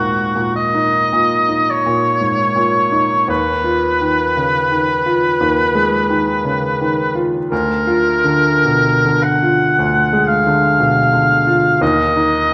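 This is a romantic classical duo for oboe and grand piano in Eb minor, tuned to A4 = 442 Hz, with a yearning, melancholic mood. It moves slowly in 4/4 at around 48-61 BPM, with an elastic rubato feel across this 12.5-second passage cut from a longer piece. The oboe carries the melody throughout, its clear tone touched by light vibrato and sounding somewhat distant and roomy despite sitting up front. Beneath it, a bright baby grand piano supplies the accompaniment from the low bass up to the middle register, its brilliant, polished sound feeling intimate and present, with the action noise of the instrument audible. The harmony moves from Eb5 through Fm7b5/Eb and Bb7/D before settling back on Eb5 at 11.8 seconds. A wet recital hall reverb with a 1.5-second decay wraps the duo in a resonant space.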